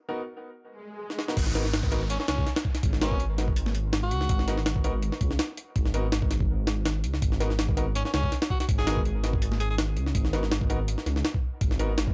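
Swung 164 BPM jungle breakbeats from a gritty, pitched-up sampler-style kit with a thumpy kick drive this raw, atmospheric drum and bass excerpt, where clear grand piano stabs on a Bmaj7 chord, soaked in dub echo and filter-swept through the opening break, carry on as the drop at 1.4 seconds brings in deep, rumbling detuned saw bass, while a bright jazz-style tenor saxophone with dub echo adds solo phrases and electronic swells, a downlifter and a noise sweep sit in the background of a dry, gritty hardware recording with transformer saturation and digital ambience.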